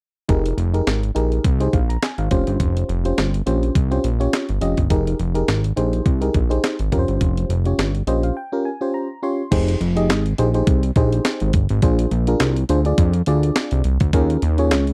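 This dry, close recording has little reverb and the feel of a 1970s studio session, and it is cut from a longer piece. It is early-eighties boogie funk, danceable and late-night, with a light swing on the sixteenths. A clean 12-bit drum machine with an electronic, sampler-style, tape-tinged character plays kick, snare, hi-hat, handclaps and crash cymbal. It was re-recorded in a small room, and its thumpy kick and medium-tuned snare sit up front. A fat analog bass carries the low end up front with a thick, detuned sawtooth tone that is saturated and evolving, with a fast attack, a filter pluck and sustained notes. Alongside it, an FM electric piano with a mellow, decaying tone and a noise layer plays minor eleventh and thirteenth chords, then a fill from 7.8 seconds continues through a break that begins at 8.4 seconds, before plainer seventh chords arrive at 9.5 seconds.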